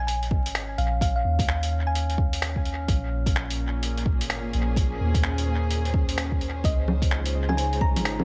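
A tine-like, thumb-piano-style synth pluck carries the melody in this wistful, nocturnal future garage excerpt, its round, gentle notes fading out at 2.5 seconds and returning at 6.6 seconds with chorus and analog delay. Beneath it, a deep electronic kick with tape-warm weight anchors a swung groove, while a muffled, overdriven lo-fi drum kit of bongos, finger snaps and hi-hat adds a pitched-down, compressed texture soaked in dub echo. A soft, round 808-style bass pumps against the sidechain, and a calm, glassy texture of drifting overtones sits far in the background with chorus and its own reverb. From 2.9 seconds a dark chamber string section enters with bowed, sul tasto sustained chords, light vibrato and a smooth top, roughened by vintage 12-bit sampler grit and the same sidechain pumping. The harmony moves from Bbm7 to Dbmaj7 as the pluck comes back, all set in an echo-heavy mix with light digital ambience and vinyl crackle.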